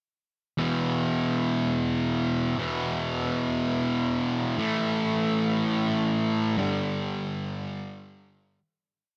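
A light reverb and a digital ambience surround this short, brooding rock piece in E minor, which moves in a slow 6/8 at 60 BPM counted in dotted quarters with a straight feel. A single electric fuzz guitar carries the whole performance from 0.6 to 8.6 seconds, playing alone and sitting up front in the mix. Its tone is bright and compressed, and double-tracking thickens the picked, ringing chords that stay in a low register from E2 to A3. The harmony moves from E5 to A5 at 4.6 seconds and settles on G5 at 6.6 seconds, when a fade-out begins. The melancholic mood comes from the slow sway of those fuzzy power chords drifting into the ambience.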